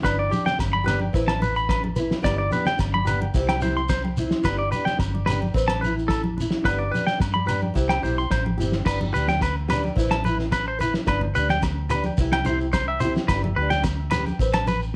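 A danceable highlife guitar band groove starts at once in G major at 109 BPM, with a bright, twangy clean electric guitar up front spinning compressed arpeggios through analog delay over a boxy, ladder-braced acoustic guitar whose picked accompaniment carries audible finger squeak. Underneath, a vintage muted electric bass played with the fingers gives a dark, round, punchy foam-muted low end, while a cloth-damped drum kit thuds along with a fat snare, tight kick and dark crash cymbal, its sound lo-fi, gritty and rolled-off at the top. A grainy, mellow shekere sits distant in a larger room, joined by ringing agogo bells at 0.1 seconds and thick-skinned, low-tuned congas at 0.3 seconds, both tucked in the background. The harmony cycles through G, Amadd9, G and C in straight 4/4, and a new section arrives at 8.9 seconds over the same progression. Light reverb surrounds the band, keeping the feel warm in this cut from a longer piece.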